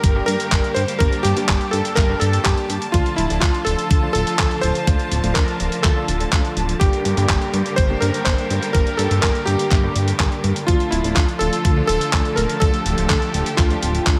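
Italo disco with a nostalgic, melodramatic air, this short cut from a longer piece moves in a straight four-four pulse over a chord pattern that alternates G minor and D minor. A bright, cutting electric grand piano carries the melody with short sustain and a delay trailing its notes, while a second, warmer electric grand piano sits in the background playing stabs with long sustain and chorused unisons. A clear studio string section holds sustained, bowed chords with focused vibrato, filling out the harmony. The chorused synth bass is glossy and retro, with a plucked filter and fast attack giving its mellow tone some shape. The drums pair a thumpy electronic kick, prominent in the mix, with a gritty, overdriven sampler-style kit of handclaps and hi-hat, both re-recorded in a small room, and light reverb sits over the whole track from 0.0 to 14.2 seconds.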